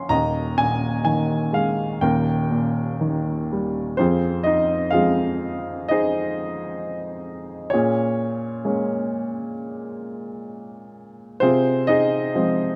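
The rhythm is loose and rubato, with uneven beats around 64 BPM in 4/4, setting a melancholic, wistful tone for this lyrical classical solo piano passage taken from a longer piece. A single upright piano, woody, polished and up front, ranges from deep bass to high treble, moving from a suspended Eb opening into F minor at 4.0 s, through Bbm7 and settling on Fm/C at 11.4 s. Close, detailed microphones keep the instrument present, while a moderate recital hall reverb adds a gentle sense of space.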